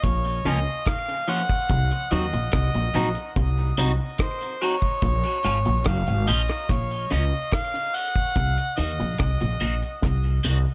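Meditative and heavy, this dub reggae excerpt at 72 BPM in Bb minor sets a clear, close-miked harmonica with light vibrato and scooped notes up front, trailing dub echo, over a growly, woody pizzicato upright bass, a dry, dark drum kit with a tight kick, hi-hat and rim click, a twangy envelope-filtered guitar riff in the background, and a slightly broken-up, compressed guitar entering at 0.5 s through phaser, high-pass filter and echo, all in a small room as the chords move between Bbm and Cdim.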